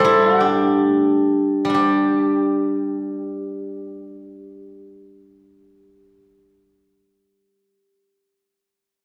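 A solo steel-string zither, played with fingerpicks and set up front, opens this flowing, elegant excerpt of Chinese traditional music in free time, slowing over its first 1.8 seconds before unfolding its silvery, ringing lines in the G zhi mode across a range from A2 to E5 through the wet reverb of a recital hall.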